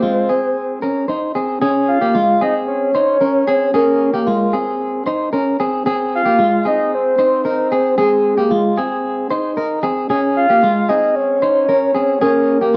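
The recording sits in a moderate studio room with a reverb time of about 0.7 seconds, and both parts are placed up front. This wistful, bittersweet indie pop passage, cut from a longer piece, moves at 113 BPM in a straight 4/4 and is tuned slightly low, to A4 = 438 Hz. A soft, octave-layered synth lead carries the melody from start to finish. Its round, dark tone blends triangle and sine with a sub octave, and it is coloured by chorus, phaser, vibrato, plate reverb and tape echo. Beneath it, a clean, fingered electric guitar plays compressed, twangy arpeggios through harmonic tremolo and plate reverb. The harmony rests on Ab before shifting to Fm7/Ab at 5.9 seconds and Bbm7 at 10.1 seconds, after a brief opening gives way to the main passage at 1.6 seconds.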